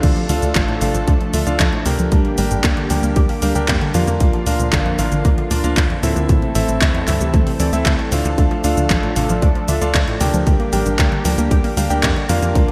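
Italo disco in D minor at 115 BPM, this bittersweet, melodramatic fragment of a longer piece rides a punchy layered electronic kick and a dark, driving sawtooth sequencer bass, with a house drum kit of cabasa, crash, handclaps and hi-hat set in small-room and gated reverb. A lush, detuned unison pad holds sustained chords with chorus, while a round analog pluck spins arpeggios through chorus and digital delay, both sitting in the background. A cutting, clangy vintage electric grand piano adds delayed stabs over a Dm, Gm, Bb, Am progression, all under a moderate plate reverb and bright 1980s-style digital production.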